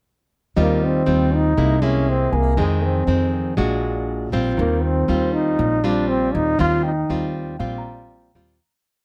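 A mellow, close-miked trombone with gentle vibrato carries a jazz-style melody of hook-like motifs from 0.6 to 7.3 seconds in this short, sunny and romantic bossa nova piece in Eb major at 120 BPM. Up front beside it, a full-bodied nylon-string guitar is fingerpicked in classical style, with thumb bass, syncopated plucked chords and the odd finger squeak. A woody, growly upright bass plays dotted root-and-fifth figures, while a clean tine electric piano scatters high notes in the background, dropping out at 3.6 seconds and returning at 6.8 seconds as the piece fades out from 6.6 seconds in a close, dry and detailed sound.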